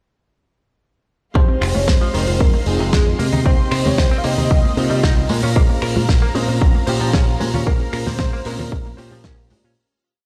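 Groovy and cosmic, this nu-disco piece sets a punchy four-on-the-floor electronic kick, a dry damped 70s drum kit with snare, snaps and open hi-hat, soft-handed background congas and an octave-jumping picked electric bass with an envelope filter beneath gritty overdriven reed electric piano chords with fast tremolo, a thick detuned unison lead with tape echo, a sustained bowed string section pad, a very quiet analog pluck arpeggio and a twangy clean electric guitar riff, before a fade-out from 7.0 seconds, heard through a big sound system in a bare stone room.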